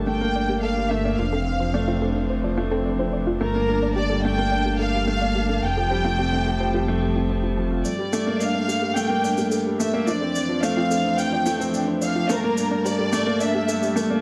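A lush hall reverb with a touch of small room ambience surrounds this short cut from a longer piano and strings electronica piece, melancholic and intimate in mood. At 108 BPM in a straight 4/4 and G dorian, a smooth, bowed string quartet holds sustained chords through a low-pass filter, moving between Gmadd9, Dm7/F and Fadd9. A clear grand piano sits up front with a riff of long sustain touched by tape echo, while a soft, round pluck plays mellow arpeggios in the background, colored by chorus, cassette tape character and tape echo. A dark, woody violin section bowed sul tasto carries the melody with vibrato and its own tape echo, and a deep, rumbling detuned saw bass with tube saturation anchors the low end until 7.8 seconds. A distant, brushed shaker with a rolled-off top enters at that point, and from 7.9 seconds a build-up unfolds with a filter sweep on the quartet.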